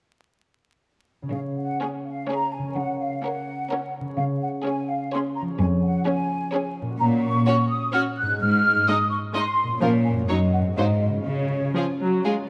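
A concert harp opens this playful, whimsical film cue at 1.2 s, its thumb-plucked arpeggios ringing in Db major at 127 BPM in a straight 3/4. Almost at once, a mellow large flute ensemble adds an airy, soft-attacked second line up front, while a lush studio cello section carries the bass, close and focused. From 1.8 s the other strings join. A chamber violin section takes the melody with a smooth top, a studio violin section shapes an expressive second line, and a distant chamber viola section supplies even accompaniment, each of these bowed sections sounding with vibrato. The mood is mischievous and quirky, with the harmony moving through Db/F, Gb/Bb, Ab and Bbm before an Ab7 resolves to Db. A moderate scoring stage reverb gives the ensemble space, and vinyl crackle lends an old-film character to this passage cut from a longer piece.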